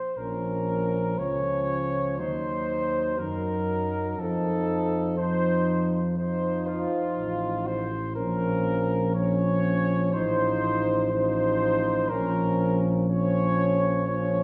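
Classical brass quintet music in Bb minor at a slow 60 BPM, heroic and solemn. A punchy trumpet with light vibrato carries the melody over a distant, roomy flugelhorn second line, while from 0.2 s a clear French horn and a soft-attack trombone set in the background supply accompaniment and an up-front, dark tuba anchors the bass, heard from further back in a wet recital hall.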